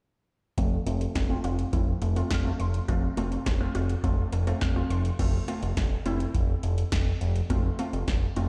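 Bright and wistful, this synth-pop excerpt moves at 104 BPM in F major, with an electro analog drum machine putting its deep kick, punchy snare, metallic hats and crash up front beside a fat, nasal, saturated analog bass holding F1. A warbling, lo-fi pluck with a dusty noise layer carries the accompaniment through chorus, phaser and a low-pass filter sweeping across the opening section, while a lush, wave-folded unison pluck with ring modulation and tape echo spins background arpeggios from F3 to F6 until 5.1 seconds. At 5.2 seconds the piece turns to a new section, all heard through light reverb as if played on a big sound system in a bare stone room.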